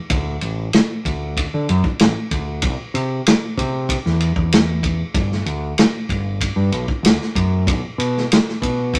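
Lightly reverberant and close, this short psychedelic rock excerpt at 95 BPM in a straight 4/4 feels kaleidoscopic and trippy, pairing a growling, overdriven fingered electric bass ranging from G1 to D3 with a vintage acoustic drum kit of punchy kick, medium-tuned snare and dark ride cymbal whose rolled-off top gives a natural small-room character, both parts up front and playing from 0.1 to 9.0 seconds.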